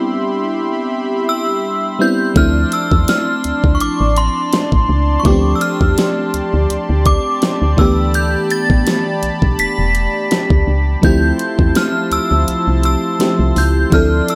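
A close, dry sound with little reverb frames this short contemporary R&B passage, cut from a longer piece, moving at 83 BPM in 4/4 with a light swing on the sixteenths and a sensual, longing mood in D dorian. For the first 2.4 seconds a lush, dreamy FM electric piano with a soft detuned pad layer, a smooth sawtooth analog pad on sustained chords, and a mellow, inharmonic synth chime playing the melody high above, coloured by ensemble chorus and digital delay, float over a Cmaj7. At 2.4 seconds a woody, round FM bass sits up front and an electronic drum kit enters with a knocking kick, a fat snare and warm hats that carry a small-room character. The harmony moves through Dm9, G7sus4/D and A9sus4 before settling on Fmaj7/D at 11.0 seconds. The kick drops out briefly near the end while the other parts carry on.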